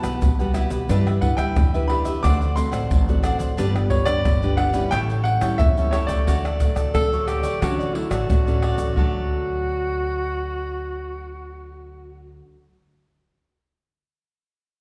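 A reverberant recital-hall sound surrounds this joyful, lively samba and choro excerpt in D major at 89 BPM. A clear baby grand piano, its action noise audible, carries the melody until 8.2 seconds over a crisp, picked cavaquinho, a fingerpicked nylon-string guitar with finger squeak, and a woody, growly pizzicato upright bass, while egg shaker, pandeiro, tamborim and a tight surdo sit close and up front until 9.1 seconds. At 6.9 seconds a breathy tenor saxophone enters as a second line, mellow in subtone with vibrato and scooped notes.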